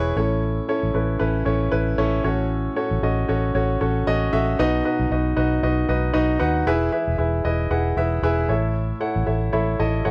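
Set at 115 BPM in 4/4, this short piano-driven pop excerpt rides a gentle sixteenth-note swing that gives its steady pulse a slight lilt. A clear, polished baby grand carries the accompaniment from the start, ranging from A2 up to B5 and sitting present and up front. Beneath it, a vintage fingered electric bass plays throughout in a low register. Its foam-muted tone is dark, round and amped, and it also sits close in the mix. The harmony moves from A through F#m/A and B to E before returning to A, lending the passage an anthemic, hopeful lift. A grand piano fill arrives at 9.3 seconds to close the clip, all within the dry, close sound of a 1970s-style studio touched by light reverb.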